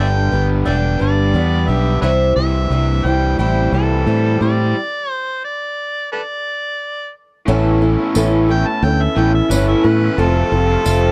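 Folk rock and heartland rock at 88 BPM in a straight 4/4, this hopeful excerpt pairs a boxy, ladder-braced acoustic guitar with audible finger squeak, a bright, double-tracked overdriven garage guitar riff, and a warm, up-front fingered electric bass under an amplified harmonica melody, moving over G and C chords. After a stop at 4.8 seconds, the gritty harmonica, with light vibrato and punchy tongue slaps, takes a solo from 7.5 seconds over Aadd9 and F, joined by a very quiet, shimmering musette accordion and, from 8.2 seconds, a jingly tambourine. The sound is dry and close, in a 1970s studio style.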